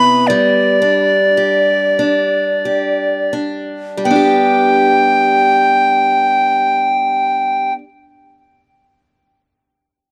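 In a rubato 3/4 that drifts between 43 and 61 BPM and slows over its first 4.0 seconds, this short cut from a longer Celtic slow air in G major sounds wistful and pastoral. A breathy tenor recorder, up front with a woody chiff and a straight, tongued tone, carries the melody from 0.0 to 7.7 seconds over a boxy, parlour-style steel-string acoustic guitar picking a bright accompaniment until 7.9 seconds, with a new section arriving at 4.0 seconds. The sound is dry and close, like a 1970s studio take, with a small room ambience around it.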